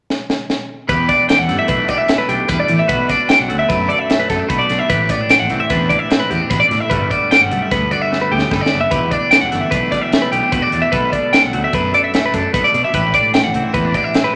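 Intricate and wistful, this math rock and midwest emo passage, cut from a longer piece, moves at 149 BPM in 5/4 in E minor: a crisp fusion drum kit with a high-tuned snare and tight kick opens on a fill at 0.1 seconds, then two bright, twangy twelve-string electric guitars enter at 0.9 seconds, one, more up front, picking chordal accompaniment and the other, with spring reverb, picking high arpeggios, over a dark, round, fuzz-overdriven fingered bass, all through Em11, Am11, Gmaj9 and Bm7 changes in a wet large studio reverb, with another drum fill at 8.1 seconds.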